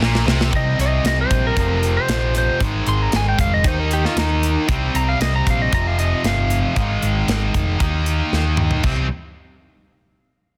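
Heavy and aggressive, this hard rock cut from a longer piece drives at 115 BPM in a straight 4/4 in C minor. An overdriven electric guitar and a scooped, high-gain guitar pound out a riff over C5, F5, Ab5 and Eb5 power chords, while a very quiet double-tracked scooped guitar appears only during the opening 0.5 s drum fill. A dark, round, punchy picked bass sits up front, and a tight metal kit with bright cymbals, a medium-tuned snare and a soft-clipped kick adds fills. A slightly broken-up, twangy, compressed lead guitar solos from 0.6 s to 7.8 s, set in small-room ambience with a dense, heavily limited modern master.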